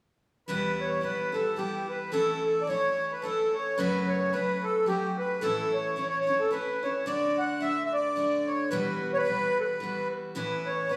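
A reedy, sweet accordion with light tremolo tuning carries the melody up front in this spirited, dark and lively Celtic folk waltz at 109 BPM in E dorian, while a bright, picked steel-string acoustic guitar with fresh strings supplies the accompaniment beneath it, both heard together from 0.5 seconds in a live-band room sound bathed in wet, large studio reverb.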